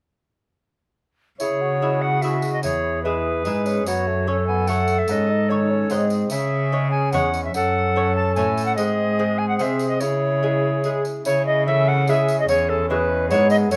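A courtly, solemn renaissance-style consort dance in three, cut from a longer piece, where a pure, distant tenor recorder carries the melody over a second, airy tenor recorder with vibrato and crisp chiff, a delicate fingerpicked lute with double gut strings, a soft-edged bassoon, a close, gut-toned bowed cello on the bass and a jingly, vintage tambourine, all in light reverb.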